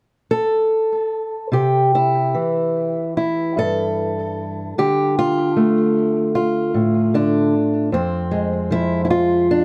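A fingerpicked, ladder-braced acoustic guitar enters at 0.3 s and plays alone, up front in a light reverb, its old strings giving a dark, woody and boxy tone across a range from F2 to A4. This hopeful, pastoral solo folk fragment, cut from a longer piece, moves freely in rubato around 75 BPM in 4/4 and C major. It settles on C at 1.5 s, moves to Dm, then darkens to Fm at 7.9 s before breaking off at 9.6 s.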